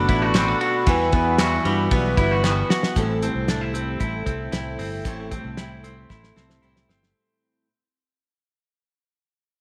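Restless and wistful, this short cut from a longer jangly indie pop piece moves at 115 BPM in A dorian, with twangy, up-front clean electric guitar arpeggios soaked in spring reverb and slapback echo over shimmering, octave-doubled twelve-string acoustic picking with subtle chorus, a round, punchy fingered bass, and a cloth-damped, thuddy drum kit with a fat snare and dark cymbals, while a distant, mellow woodwind section holds chords until 2.9 seconds, faint hollow handclaps sound from 0.4 to 2.6 seconds, and the whole thing fades out from 3.0 seconds over chords moving from Bm7 to Emadd9 to Am7.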